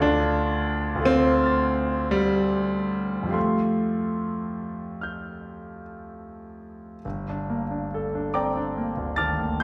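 A bright concert grand with audible action noise and deep bass opens this mysterious, hazy excerpt of impressionist classical solo piano in G minor, drifting in rubato 9/8 at about 45-58 BPM through Dm7 and Fadd9 before settling on Gm9 at 7.0 seconds, heard from further back within a wet recital-hall reverb.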